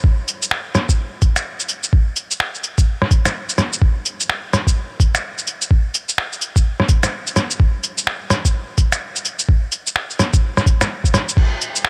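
A thumpy, muffled electronic kick drum sits up front from the start of this short future garage cut, pitched down and compressed with a sampler-style, tape-warm character at 127 BPM in 4/4 with a 16th-note swing. At 0.3 seconds a lo-fi sampler-style drum kit joins, its cabasa, crash cymbal, finger snaps, rim click and shaker also pitched down, dulled and squeezed close. The dry room gives this fragment from a longer piece a ghostly, wistful air.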